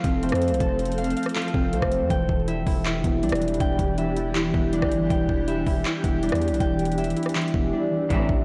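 Menacing and melancholic, this half-time trap cut at 160 BPM in E phrygian moves from F to Em7, with a knocking, metallic trap kit and a fingerpicked, ringing concert harp sitting up front, its arpeggios trailed by delay. Beneath them, a punchy, saturated 808-style bass, muted felt-like synth keys carrying a dark, intimate chorus-treated glow, and a cloudy, evolving granular pad with its own reverb fill out the low and middle range. After a silent gap from 7.7 to 8.1 seconds, a lush, bowed symphonic string section lands brief delayed stabs, all within a blown-out, overdriven recording flecked with vinyl crackle and light reverb.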